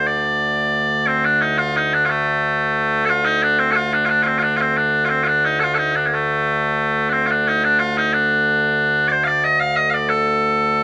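A loud, piercing set of bagpipes plays alone from the very first second, holding a continuous, up-front sound through the whole 10.8-second fragment of a longer piece. The music is medieval in character, set in D Phrygian, which lends it an ancient and mysterious mood. It moves briskly at 179 BPM in a straight 3/4, and the pipes range from D2 up to F5, tuned slightly sharp with A4 at 443 Hz. A short slapback echo trails the bright pipes, giving the instrument a faint doubled edge. Recorded outdoors, the sound is dry and open, with little reverb and nothing of a room around it.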